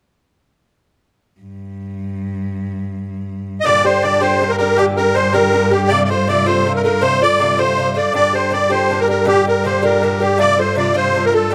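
Closely miked in a small, moderately reverberant room, this portion of a longer Celtic folk jig in 6/8 has a dark yet spirited, lively mood. A biting, nasal bowed cello holds a single low drone note with vibrato from 1.4 seconds. At 3.6 seconds a reedy, shimmering musette accordion enters up front with the melody, its wet tuning bathed in plate reverb, while a picked, metallic Irish bouzouki with double strings adds accompaniment over alternating minor and sixth chords.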